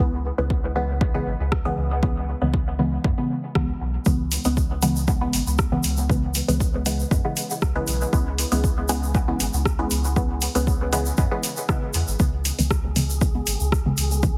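Dub techno at 118 BPM in 4/4 with a straight feel, this meditative, hazy piece in C# minor is cut from a longer piece and rests on a single C#m7 chord. Muted, detuned chord stabs sit up front, colored by phaser, sidechain pumping and dub echo, with a filter sweep on the stab from 12.2 seconds. Beneath them a round, soft sub bass pumps along with the sidechain, while an overdriven, deep electronic kick drives the pulse from 0.5 seconds. A deep house kit adds metallic hi-hats and rim clicks with a tape-warm edge, and a grainy, bright egg shaker recorded in a live room joins at 4.1 seconds. In the closing moments an airy, breathy wind-like tuned noise texture on G#4 drifts in at 12.6 seconds with its own reverb, all set in light digital ambience and a heavily compressed, radio-like overall sound.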